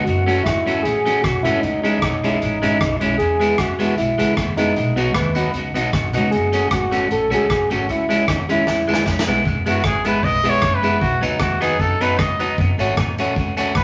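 Bouncy and cheerful, this ska excerpt moves at 153 BPM in 4/4 with a light swing, centred in E major. A lightly overdriven tonewheel organ with key click and a slow rotary speaker carries the opening melody, while a twangy, slightly broken-up electric guitar sits up front with tape echo, and a dark, mellow upright piano adds very quiet stabs. Underneath, a woody, thumpy pizzicato upright bass and a polished street-band drum kit with an airy big-room sound and boomy kick drive things along, with a faint jingly tambourine joining at 3.4 seconds. The organ's line ends at 9.0 seconds, and after a drum fill a clear, up-front trumpet takes a smooth, vibrato-laden solo from 9.7 seconds to the close. Chords cycle through F#m, C#m, E and B, and a wet studio reverb gives the whole band a sense of space.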